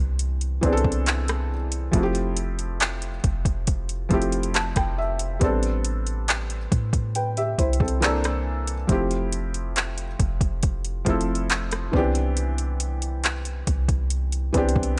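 Contemporary R&B at a slow 69 BPM in C major, tender and dreamy, with a felt-muted upright piano whose mellow, intimate tone and audible action noise carry soft, short-sustained chords from Cmaj9 through Fmaj9, Am11 and C13 (adding a brief fill at 4.1 seconds), over a deep, boomy, sine-like 808-style bass and a smooth electronic drum kit of soft kick, metallic hi-hats, handclaps and rim clicks with an overdriven edge, all up front in a dry, close mix cut from a longer piece.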